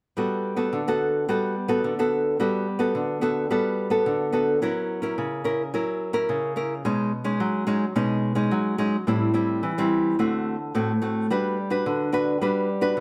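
A straight samba pulse in 4/4 at 108 BPM drives this festive, lively excerpt in G major, tuned to A4 = 442 Hz. A lone fingerpicked nylon-string guitar carries everything from 0.2 to 13.0 seconds, its small, warm acoustic tone sitting up front while a moderate studio reverb places the listener further back in the room. The harmony moves from Gmaj9 through F#7, B69, Am7 and D7 before settling on Gmaj7 at 11.3 seconds.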